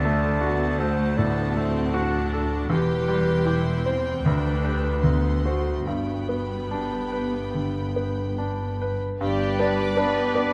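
Classical romantic movement for piano and orchestra in G major, passionate and brooding, moving at 70-81 BPM in 4/4 with a rubato feel, cut from a longer piece. A bright, brilliant concert grand carries the melody up front with deep bass and short sustain, joined by a mellow solo clarinet line, a very quiet, lush violin section high above, bowed violas with vibrato, and cello and double bass sections rich in the background. At 9.2 s a second violin section takes up the melody as an airy flute, a clear oboe, a very quiet bassoon, soft horn chords and distant, punchy trumpet stabs join, all captured with close, detailed microphones and light reverb.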